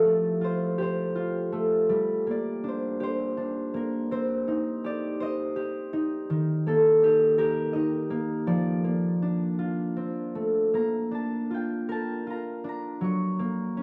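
A lone concert harp, thumb-plucked and ringing up front in a dry, close 1970s-style studio sound, carries this gentle, sleepy children's lullaby in 6/8 at a slow 54 BPM in Bb major (tuned to A4 = 442 Hz), moving through Fadd9, Gm, Cm and Eb before settling on Bb at 10.7 s and shifting to a Gb chord at 13.0 s as the short excerpt ends.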